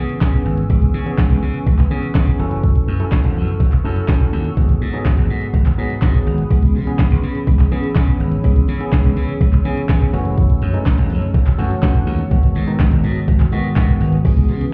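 Bittersweet yet energetic, this dance-pop excerpt moves at 124 BPM in a straight 4/4, settled in C# minor and cycling through minor-seventh chords from C#m7 to F#m7 and G#m7. A tape-warm smooth R&B drum kit sits up front with a soft kick, sharp snare, crash cymbal, handclaps and warm hats, driving the groove alongside a bright, punchy glassy slap bass that also sits close and direct. A worn, slightly out-of-tune tine electric piano plays the accompaniment through a combo amp, its clean tone pumping against the sidechain. Above it, an ethereal airy pad holds sustained chords with a slow attack and long release, its detuned unison layers softened by ensemble chorus and built-in reverb, sitting well back in the mix. The whole piece is heard muffled as if through a wall, wrapped in club reverb, giving the impression of a dance floor in the next room.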